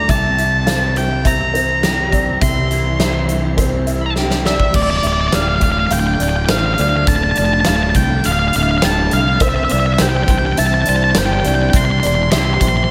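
A straight 4/4 pulse at 103 BPM drives this brooding, cinematic post-rock piece in D minor, tuned to A4 = 437 Hz and cut from a longer work. A big rock drum kit with a punchy kick, medium-tuned snare, bright cymbals and hi-hat anchors the groove from 0.1 seconds, with a fill leading into the second section at 4.7 seconds. Up front, an octave-fuzz lead guitar carries the dark, distorted melody through slapback echo and digital delay, while a round, overdriven fingered bass growls underneath. In the background, a twangy, slightly broken-up electric guitar through a small old amp plays arpeggios with ensemble chorus and delay. A soft felt-muted upright piano, with audible action noise and short sustain, adds its own arpeggios with slapback echo and delay. From 1.0 seconds a very quiet, icy, crystalline glass pad holds sustained chords as the harmony moves from C to Dmadd9 and back to C, all set in a lush hall reverb that gives the mix a big arena sound.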